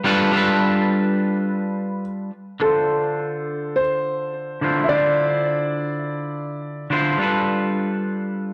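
In a steady, straight four-four, this smooth, relaxed chillout fragment puts a twangy, slightly broken-up electric guitar up front, its picked accompaniment carrying analog delay, a low-pass filter and a filter sweep over G9 and Dm9 harmonies, while an intimate, boxy grand piano with audible action noise and long sustain sings a tape-echoed melody until 6.9 seconds, captured in a dry, gritty small-room recording with light reverb.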